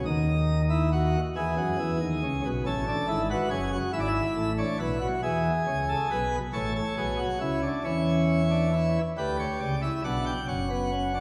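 Classical baroque-style three-part fugue for solo pipe organ, a stately and joyful fragment cut from a longer piece in A major at 46 BPM in dotted quarters of a straight 6/8, tuned to A4 = 438 Hz, where the full plenum with brilliant mixtures and crisp pipe chiff sits up front in its baroque voicing, spanning F#1 to G5 and moving through D#m, E, A and E/G# before turning at 7.9 s to a C#dim/E colour and settling on F#5 at 10.5 s, all wrapped in a wet scoring-stage reverb heard from further back in the room.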